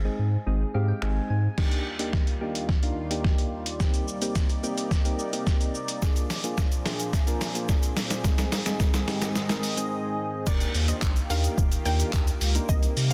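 A straight 4/4 groove at 108 BPM drives this carefree, summery dance-pop excerpt in Eb major. A lo-fi sampler-style drum kit arrives at 1.0 s, muffled and pitched down, with a thumpy kick, medium-tuned snare, hi-hat, handclaps, finger snaps, shaker and crash cymbal, overdriven and sitting up front as if re-recorded in a small room. Soft, round electric-piano-like synth keys with chorus and sidechain pumping carry the accompaniment throughout, while a deep, saturated sub bass opens the clip, drops away, and returns for the drop at 10.5 s. A lush unison pad of detuned sawtooth and square waves enters with a slow attack and a nasal, moving-notch colour, sustaining chords through Ebmaj7, Cm7, Bb7 and Ab during the build-up. A grainy, bright egg shaker adds very quiet, close detail from 6.0 s, and after a brief break the drop brings in a punchy, detuned unison pluck melody in the background, touched with digital delay. 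Light reverb and digital ambience frame a dense, heavily limited modern master.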